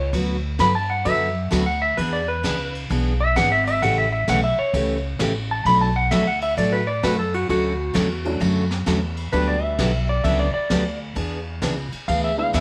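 A dark, clean lap steel guitar slides up front through this playful, down-home western swing excerpt in D major at a swung 131 BPM, carried by a woody, thumpy pizzicato upright bass on gut strings, a full-bodied picked dreadnought acoustic guitar and a vintage brush kit with a high-tuned snare, punchy kick and rolled-off top, while a mellow, short-sustained upright piano joins at 8.2 seconds in a lightly reverberant studio room.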